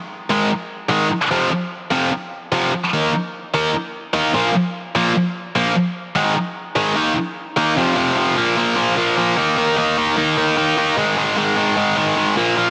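Rock at 149 BPM in a driving, heavy mood, this short cut from a longer piece features a lone double-tracked, high-gain electric guitar, picked and bright with distortion up front, entering at 0.3 seconds and running through a chord shift around 7.8 seconds to 12.7 seconds as power chords on Ab, F, Eb and Bb move beneath a moderate plate reverb and a heavily compressed, radio-like sound.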